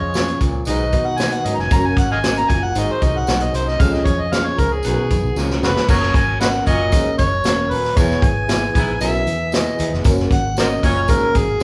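Uptempo 1960s-style soul at 115 BPM in 4/4 with a straight, joyful and uplifting feel, settling into F# mixolydian from 5.9 s. An amplified, gritty harmonica leads up front with tongue slaps, scooped notes and light vibrato, taking a solo over the opening 5.9 s before a drum fill at 5.4 s carries the band into the second section. Beneath it, a soft-attack saxophone section holds a clear second line in the background, while a subtoned baritone saxophone, also scooped and lightly vibrato, works a low riff from 0.4 s. A reedy, worn, slightly out-of-tune electric piano with overdrive and fast tremolo fills the accompaniment, and a very quiet percussive tonewheel organ with key click, chorus vibrato and slow rotary speaker holds sustained chords. The foundation comes from a dark, round, foam-muted electric bass and a punchy vintage kit with dark cymbals, hi-hat, snare and crash, topped by a jingly, compressed tambourine. 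The band sounds as if playing live in one room, bathed in a large studio reverb, and this is cut from a longer piece.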